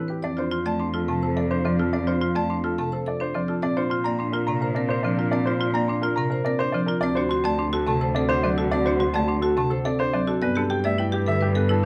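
Piano, two hard-mallet marimbas and cello start together in this bright, propulsive excerpt of classical minimalist pattern music in F major, moving at 106 BPM in a straight 3/4. The polished, up-front piano carries the melody over woody marimba arpeggios, a dry, rustic folk marimba accompaniment and a rich bowed cello bass with vibrato and portamento, while a mellow French horn enters at 0.2 seconds as a distant second line in the background. Light reverb surrounds the ensemble as the harmony passes from F through Bb and D to Gadd9.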